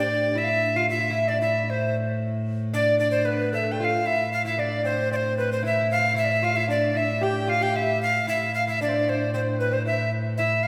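A straight 2/4 pulse at 114 BPM drives this ancient-sounding medieval dance in A minor, cut from a longer piece. A breathy, bright tenor recorder carries the tune up front with a tongued chiff, while an airy bass recorder with vibrato plays a second line in the background, and a delicate, fingerpicked lute on gut double strings adds another. A rich viola da gamba holds a bowed, ringing drone on A2 beneath them, and a wet concert hall reverb sets the ensemble further back in the room, with the music moving into a new section at 4.1 seconds.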